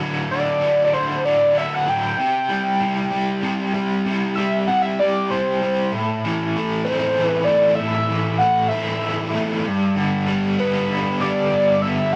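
A rough, saturated rehearsal-room sound with a short booth ambience frames this dark, mysterious rock fragment in 6/8, where a double-tracked, up-front overdriven electric guitar plays a picked riff with tremolo over D, C5, Am and G while a screaming, gritty sawtooth synth lead with chorus, vibrato and distortion enters at 0.3 seconds and takes a solo until 5.9 seconds before carrying the melody through the second section.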